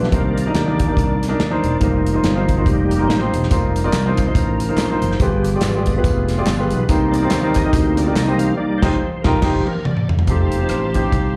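Uptempo gospel at 142 BPM with a swung, hopeful and soulful feel, cut from a longer piece and heard as a live gig through a club PA with light reverb. A reedy, key-clicking tonewheel organ on fast rotary speaker leads with a solo over an intimate grand piano with audible action noise and slapback echo, a growly, punchy fingered electric bass and an up-front acoustic drum kit with a punchy kick, while tambourine and handclaps sit in the background from 3.5 to 8.5 seconds. After a band accent and drum fill, a tight horn section with vibrato takes the melody at 10.3 seconds as the chords move through Cm9, F7sus4, G7b9 and Cm7 to F7.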